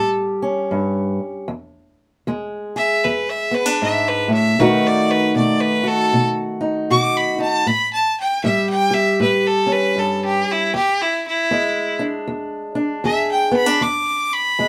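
Close, detailed microphones and light reverb frame this laid-back, rollicking excerpt of acoustic country blues at 78 BPM in a swung 4/4, where a biting, earthy fiddle with light vibrato takes a solo over a dark, woody, boxy parlour steel-string guitar, fingerpicked on old strings, as the chords move from A7 to E7 and B7 across the 14.7 seconds.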